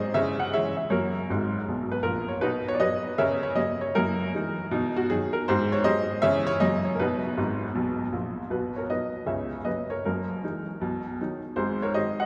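A brisk swing at 158 BPM in 4/4 drives this playful stride piano cut from a longer piece, set in B major and moving through changes like C#m, F#13 and G#7. A lone upright piano, woody, worn and slightly detuned with a short sustain, sits up front and spans F#1 to F#5, dropping in quick fills at 1.3 and 7.4 seconds. Around it hangs a long, wet church reverb, giving the close, clear piano a spacious hall-like glow.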